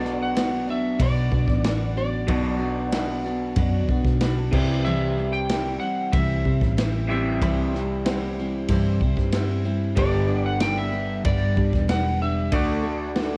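Recorded at home on cassette and bathed in studio reverb, this hopeful, open-road slice of folk rock and heartland rock, cut from a longer piece, moves through Bm, C, G and D in a straight 4/4. A slightly broken-up electric slide guitar played with fingerpicks carries the melody over a riffing electric guitar pushed through a small old amp and a phaser, a bright jumbo steel-string acoustic guitar picked in the background, a round, dark hollow-body bass and a punchy, natural country drum kit, with the bass and drums sitting up front. A very quiet, woody upright piano adds fills at 3.9 and 9.0 seconds.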